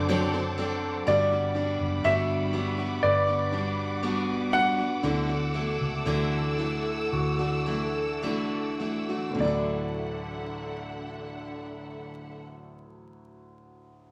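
This tender, hopeful pop ballad excerpt in D major opens at a slow 50-62 BPM on a D7/F# chord, with a mellow, distant French horn section sounding only until 0.6 s over a clear concert grand piano with audible action noise and deep bass, lush bowed strings with vibrato and portamento, a bright, full-bodied picked steel-string acoustic guitar playing arpeggios, and a dark, round, foam-muted electric bass. At 1.1 s a polished baby grand piano takes the melody, clear and present, as the harmony moves to Gmaj7 and then Dadd9, and the tempo slows through the middle of the passage. A large, wet studio reverb and a layer of vinyl crackle frame the sound, and the concert grand rings on alone to the end.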